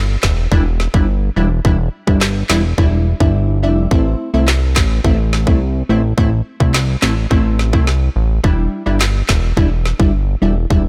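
Tough and hypnotic, this short dancehall excerpt cut from a longer piece rides a fat, saturated sawtooth bass up front, an island pop drum kit of handclaps, tight kick and woody snare with a tape-warm tone, and crisp, detuned wavetable chord stabs with a moving notch, all set in a digital ambience as the harmony shifts from Em7 to Am and back by 8.4 seconds.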